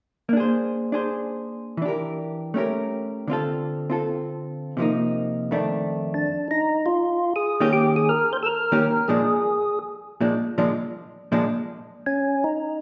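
A fat, lightly overdriven tonewheel organ with percussive attack and a slow rotary speaker carries the melody from 6.1 seconds, returning briefly at 12.1 seconds in this bluesy, soulful swing jazz piece at 162 BPM in Bb mixolydian. Before and beneath it, a dark, clean, compressed hollow-body electric guitar picks the accompaniment from 0.3 seconds, moving through changes such as Bb9, Em7b5, A7b9 and Dm7 before settling on Bb and Eb7 chords. Both parts sit up front in a wet recital hall whose 1.4-second reverb lends the short cut from a longer piece a churchly glow.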